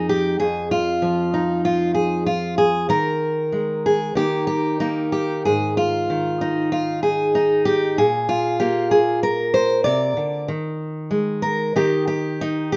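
A fingerpicked steel-string acoustic guitar carries this short folk excerpt entirely by itself, sitting up front with a warm, auditorium-sized body to its tone. The mood is nostalgic, and although the nominal tempo is 95 BPM in 4/4, the playing moves with a rubato feel. The guitar ranges from F2 up to D5, opening with an unharmonized passage before settling on Ebsus4 at 2.9 seconds, then moving through Eb, Ab5 and Bb7. The harmony returns to Ebsus4 near the close before dropping back to an unharmonized passage at 11.7 seconds. A moderate large-studio reverb gives the instrument a gentle sense of space around its up-front presence.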